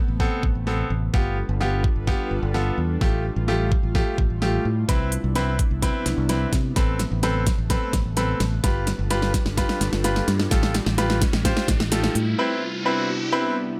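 Driving and confident, this dance-pop excerpt moves at 128 BPM in a straight 4/4, tuned to A4 = 439 Hz, and plays as one long build-up. Up front, a layered, produced electronic pop drum kit with a knocking kick, fat snare and crisp hats plays a fill through most of the passage, while a direct, amped fingered electric bass pumps against the sidechain. A brilliant concert grand piano with deep low end and short sustain carries the accompaniment, also pumping, over a cycle of Amadd9, G7, Fadd9/A and Cmaj7. In the background, a mellow, breathy pad of detuned sawtooth and triangle tones, with a noise layer and ring modulation, holds sustained chords with a slow attack, long release and chorus. An electronic riser enters at 9.5 seconds, and the drums and bass drop out at 12.3 seconds for a short break beginning at 12.4 seconds, leaving the piano, pad and riser in a digital ambience.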